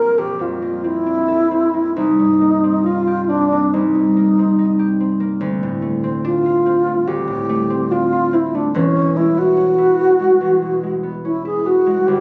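Unevenly pulsed and rubato in 4/4 at about 71 BPM, this dreamy, pastoral excerpt from an impressionist classical duo sets a pure, distant, tongued alto flute melody with vibrato in the foreground over fingerpicked, ringing concert harp that moves through Bbmaj9, Cm7, Dm7 and E69 for the full 12.2 seconds, both heard up front yet softened by a moderate recital hall reverb and the compressed sound of a phone in the room.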